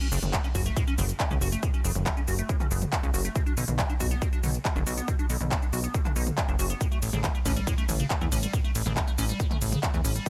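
An emotional, driving uplifting trance excerpt at 139 BPM opens with squelchy, resonant liquid acid bass arpeggios drenched in phaser, lush chorus, tape echo and sidechain pumping alongside an overdriven big-room dance drum kit of crisp hats, handclaps, ride, shaker and toms, joined at 0.1 seconds by a punchy, funky plucky analog bass up front and at 0.3 seconds by a punchy, overdriven electronic kick, all moving through F#m, Bm and A.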